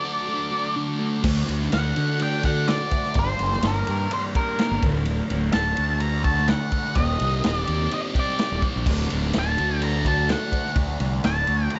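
A straight 4/4 pulse at 126 BPM drives this hypnotic, dark psychedelic rock excerpt in D phrygian dominant, tuned slightly flat to A4 = 438 Hz. It opens with a short break in which the octave-fuzz lead guitar, the thick fuzz guitar riff and a buzzy combo organ sound together, before the fuzz fingered bass and a vintage drum kit come in at 1.2 seconds. The up-front lead guitar carries the melody between Bb4 and Bb5 with a distorted, shadowy fuzz tone trailed by tape echo. Beneath it the double-tracked rhythm guitar grinds out its riff through distortion and phaser, while the overdriven bass sits round and prominent. The drums are acoustic and natural in a studio room, with a punchy kick, medium-tuned snare, ride and crash cymbals, and a rolled-off top. The organ adds faint chorused chords with light vibrato in the background, dropping out after the opening and returning at 8.9 seconds as the harmony moves from D through Gm and Eb6 and back to D.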